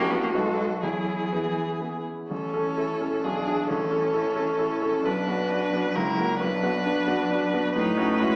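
Graceful and spirited, this short passage from a quick classical-period movement for piano quartet moves in a lilting triple metre with a flexible, rubato feel. A clear, focused violin carries the melody with vibrato from a slightly distant place. A grand piano with a natural, up-front sound accompanies alongside a smooth-topped viola, while the cello sings a soft-edged, expressive second line with portamento. The four players sit in a wet church or concert-hall reverb heard through a small-speaker tone, and the harmony turns toward B minor at 5.0 s.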